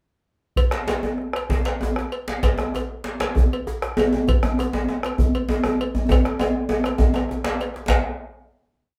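Recorded live in one room with moderate studio reverb, this short, complete West African traditional drum ensemble piece in 12/8 at 131 BPM feels earthy and festive as it speeds up throughout. A deep, dark bombo lays down an evenly spread pattern beside a metallic, close and dry cowbell bell pattern, while a tight, cracking djembe with metal rattles sits in the background under hard hands. Up front, a second djembe, warm and deep with its own metal rattles yet distant in a large room, plays lead drum phrases, and a drum fill from 6.1 seconds leads into a final hit at 7.9 seconds.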